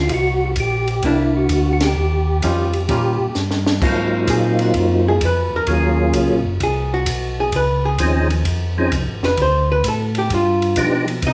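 Bluesy and soulful, this short cut from a longer soul jazz organ trio swings in 4/4 with a swung eighth-note lilt. A percussive tonewheel organ carries the melody with a round, clean tone marked by third-harmonic percussion, chorus vibrato, a slow rotary speaker and plate reverb. A second tonewheel organ holds down the bass, mellow and lightly overdriven, with its own chorus vibrato and slow rotary spin. A compact cocktail drum kit sounds acoustic and dry, with dark cymbals, a high-tuned snare and a punchy kick, and an archtop guitar, miked and amplified, joins at 1.0 s with a clean, picked, compressed hollow-body voice. After a band accent and a short drum fill, the guitar takes a solo from 3.8 s over rich extended chords, sitting up front beside the organs in a moderate studio reverb.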